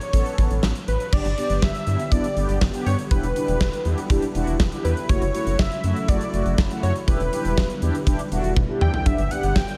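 A thick, detuned sawtooth unison lead with vibrato, tape echo and shimmer reverb opens this bright, nostalgic synth-pop excerpt alongside a huge, up-front arena drum kit with a punchy kick, fat snare and bright cymbals, while a rubbery, hollow, bouncy square bass and round, brassy synth brass treated with chorus and phaser join almost at once. From 1.1 s an evolving sawtooth pad with a slow attack, a filter swell, chorus and shimmer reverb settles in the background as the chords move through G, Em7 and F#m7. A drum fill at 8.6 s caps the passage in a light small-room ambience.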